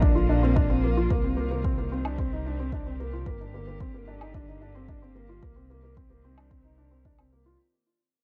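A straight 4/4 pulse from a deep electronic kick, joined at 2.0 s by a woodblock, both overdriven with small room ambience and cassette tape colour, carries this moving, intimate piano and strings electronica fragment, where a felt-muted upright piano plays a soft, mellow riff up front with audible action noise and analog delay, a rumbling, detuned saw bass pumps underneath, and a distant, clear string quartet sustains bowed chords through sidechain pumping and a low-pass filter over Bb, Cm7 and Gm as the home cassette recording fades out.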